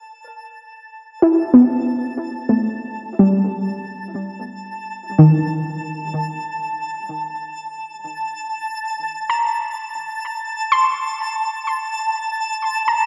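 Dark, warm production sits inside a lush hall reverb with a long tail, giving this brief ambient fragment a weightless, warm mood. Up front, a soft, round synth pluck with a fast attack and short decay plays arpeggios across a broad register for the full 13.1 seconds, colored by analog chorus and tape echo. Behind it, a twinkling granular texture holds a high A, its slow attack and long release adding a bright, sparkling octave-up shimmer bathed in its own reverb. That texture fades in gradually across the whole passage, staying much lower in level than the pluck. The harmony drifts from G6 to Eb at 4.4 seconds and settles on Bbmaj7(no3) at 10.1 seconds, cut from a longer piece.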